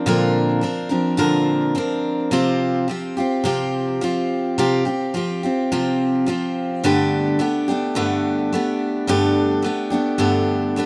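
Warm and jangly, this short rock passage sits in a straight 4/4 feel and is carried entirely by a single picked steel-string acoustic guitar, playing solo from start to finish. The guitar has a bright, auditorium-style tone and sits up front, ranging from G2 up to Bb4. Its harmony opens on Bbadd9, moves to Csus4 at 2.3 seconds and settles on Gadd9 at 6.8 seconds, giving the open, suspended colors a ringing, unresolved quality. A moderate small-room reverb adds a touch of space around the strings, while the rough home-demo mix keeps the sound plain and intimate. Cut from a longer piece, the fragment simply repeats its opening idea before it stops.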